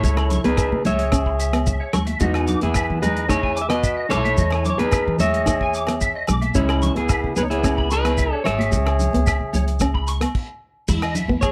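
A dry, close 1970s-style studio sound frames this joyful, danceable highlife guitar band excerpt in E major at 110 BPM, where a dark, slightly broken-up electric guitar with lush chorus carries the melody up front over a growling, raspy trumpet second line, twangy clean electric guitar arpeggios with slapback echo, background fingerpicked nylon-string guitar, woody pizzicato upright bass, a cloth-damped thuddy drum kit, grainy shekere, ringing agogo bells and high-tuned congas, with a stop from 10.3 to 10.9 s.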